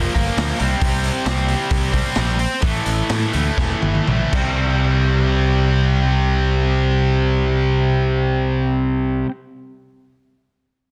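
Hard rock with a swaggering, energetic drive in 4/4 at 114-136 BPM in C mixolydian, built on an up-front, double-tracked, bright distorted guitar riff over a punchy, direct picked electric bass, while a gritty garage drum kit with dark cymbals and a pumping small-room sound plays a fill from 3.6 to 4.6 seconds as the tempo slows, before dropping out, all in a dense, heavily limited mix with light studio reverb.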